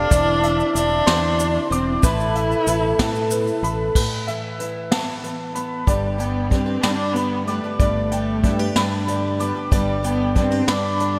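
A bowed, woody cello carries the melody from the start, up front and dark with vibrato, over a shimmering, octave-doubled twelve-string acoustic guitar, a worn, slightly detuned upright piano playing long-sustained arpeggios through subtle chorus and delay, and a round, punchy fingered electric bass. This is wistful, stirring indie folk in a slow 6/8 at 62 BPM, cut from a longer piece and arranged to build. A very quiet, flute-like tonewheel organ with key click and slow rotary speaker holds soft sustained chords until 3.9 seconds, while a grainy tube shaker sits in the background until 3.6 seconds. A vintage brush kit with dark cymbals, a high-tuned snare and a punchy kick plays up front and natural throughout, its top rolled off. From 4.0 seconds a full-bodied, fingerpicked steel-string guitar with analog chorus joins in the background, and at 5.9 seconds the harmony moves from Cadd9/E and Asus2 to G. 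A moderate lush hall reverb and bright 1980s-style digital production frame the mix.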